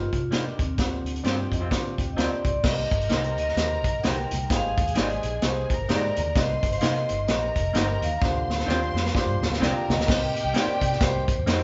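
A ringing vibraphone melody opens this driving, urgent slice of swung 1960s-style soul over a round, foam-muted electric bass and a warm grand piano tucked in the background, which plays a fill from 1.2 to 2.6 seconds, while an up-front vintage drum kit with dark cymbals and a punchy kick drives beneath. A twangy, slightly broken-up electric guitar adds stabs through spring reverb, and from 2.6 seconds veiled, con sordino strings carry a lush second line as very quiet congas join in. A drum fill from 8.2 seconds leads back to the opening minor chord, the whole band captured live in one room with a rolled-off top.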